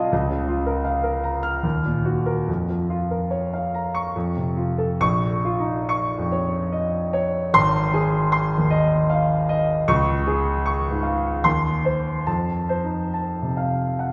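A wet concert-hall reverb with a 2.4-second tail surrounds a clear, up-front concert grand piano whose deep bass and open tone span from Ab1 to F6. This brooding, stormy romantic character piece for solo piano moves in a flexible, rubato triple metre. An opening passage settles on an F chord at 4.1 seconds before a second section begins at 5.0 seconds and again arrives on F at 12.3 seconds, cut from a longer work.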